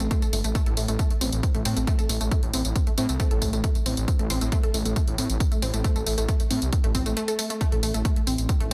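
A thick, menacing detuned saw bass and a lush, punchy unison pluck open this driving peak-time techno excerpt at 136 BPM in straight 4/4, joined at once by layered electronic hi-hats and tambourine. The bass sits up front, its beating sawtooth, square and sine layers given tube saturation and sidechain pumping, ranging from G1 to A2. Above it the full-bodied pluck riff, built from detuned sawtooth, noise and sine layers with a fast-attack filter pluck that decays, moves between A3 and A4 over a rootless Gsus4, carrying delay and its own sidechain pumping. A heavy, layered electronic kick enters at 0.1 s and stays up front, while the hats and percussion pump with sidechain and share the kick's large-room re-recorded character. The mood is relentless and intense, with light reverb and a dense, heavily limited modern master holding the single section together until the cut at 8.7 s.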